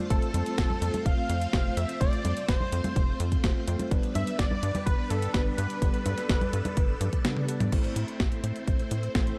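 Danceable and melodramatic, this italo disco excerpt in A minor moves at 126 BPM in a straight 4/4, with chords shifting from F to G and arriving on A minor at 7.7 seconds. A punchy, tape-warm electronic kick sits up front, joined by a sampler-style 12-bit drum machine whose overdriven congas, hi-hat, medium-tuned snare, toms and crash cymbal also sound close, re-recorded in a small room, with a drum fill from 7.0 to 7.7 seconds. Beneath them a tight sequencer bass drives with a fast-attack, decaying sawtooth and square-wave filter pluck and a mellow tone. A lush vintage string machine holds sustained chords with soft attack, long release, phaser and ensemble chorus, while a bell-like tine electric piano adds clean stabs through digital delay from the background. On top, a thick, bold unison lead of detuned sawtooth and wave-folded tones carries the melody with vibrato and tape echo until 7.2 seconds, all within a dark production that uses little reverb.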